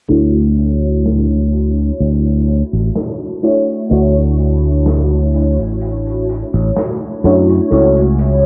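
A dreamy, woozy vaporwave excerpt at 63 BPM in D major opens at 0.1 s with a lush FM electric piano and soft pad layer resting on a Dmaj9 chord, its mellow tone blurred by phaser, ensemble chorus, analog delay and cassette tape, before shifting to F#m7 at 7.7 s. Underneath, a bright, growly fingered electric bass sits direct and up front, while a loose indie drum kit plays hi-hat and snare quietly, with a medium-tuned snare and a rolled-off top coloured by tape. A filter sweep runs through the whole passage, and the moderate studio ambience and low-passed home cassette recording give it a hazy, faded character.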